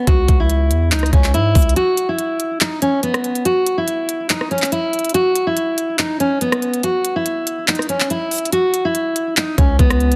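A dense, heavily limited modern mix with light reverb carries this dark, melancholic trap excerpt at 142 BPM in half-time C# minor, where a full-bodied, fingerpicked jumbo steel-string acoustic guitar plays the melody up front through a low-pass filter and digital delay, a punchy, heavy 808-style bass with a sine tone and noise layer hits briefly at the start before falling away and returning at 9.6 s, and an electronic trap kit of knocking kick, crisp hi-hats, handclaps and rim clicks drives throughout, its kick dropping out from 8.5 to 9.4 s.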